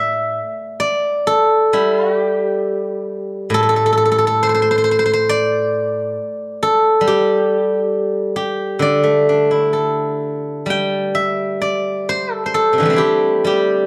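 A steel-string zither, plucked with fingerpicks and placed up front, plays alone throughout this elegant, flowing 13.9-second fragment of Chinese traditional music, its ringing, silvery tones moving freely in rubato across a span from low A2 to high G5, framed by a dark production and a light touch of reverb.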